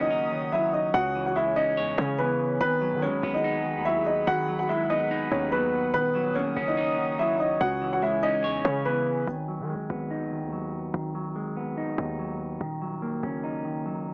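A mellow, up-front grand piano with audible action noise carries the melody in this dark, tense half-time hip hop excerpt, backed by a clean picked electric guitar with spring reverb, a warbling lo-fi pad with chorus, and a punchy, heavy 808-style bass, until the piano and pad drop out at 9.3 s and the guitar and bass carry on alone through a small-speaker sound in a moderate studio ambience.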